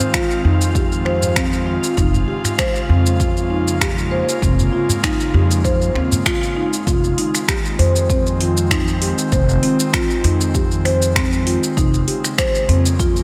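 A breathy, chorused pad pumps beneath snaps, metallic hats and shaker from an overdriven deep house kit, while a small background udu (until 6.2 s) and a faint wind-like tuned noise texture (until 6.9 s) drift along, soon joined by echoing padauk-bar marimba arpeggios, a punchy overdriven electronic kick and a thumpy, gut-strung pizzicato upright bass, giving this mystical, hypnotic organic downtempo passage, cut from a longer piece, a lush hall reverb and a big arena sound.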